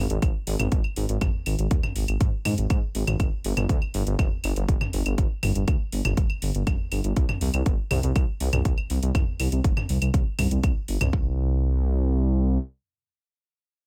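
A dry, close-sounding slice of melodic techno at 121 BPM in straight 4/4, driving yet melancholic, cut from a longer piece and opening straight into a drop that runs until 11.1 seconds. Up front, a dark detuned saw bass rumbles deep and beating, its unison sawtooth layers sustained with a fast attack and pumping against the sidechain, while a punchy electronic kick, tape-toned and re-recorded in a small room, sits forward beside it. A house drum kit of claves, metallic hats and toms pumps under the same sidechain until 11.1 seconds, the kick drops out at 11.2 seconds, and the bass then carries on alone to 12.6 seconds.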